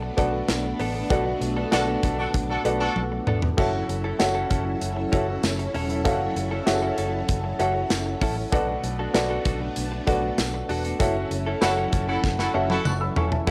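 Moody and dramatic, this 1980s-style pop excerpt moves at 97 BPM in F# minor, with a dark, intimate baby grand piano with audible action noise and a lush sawtooth string machine holding sustained chords over Bm7 and F#m7, while a clean, compressed direct-recorded electric guitar plays a riff through subtle chorus and analog delay. A round, foam-muted fingered bass and a punchy, polished acoustic drum kit carry the groove, with band accents and drum fills near the start and again toward the end, where a distant, roomy horn section returns with stabs at 11.6 seconds after first sounding at 1.7 seconds. A very quiet, jingly tambourine joins at 4.2 seconds, and the whole home cassette recording sits in a moderate studio reverb.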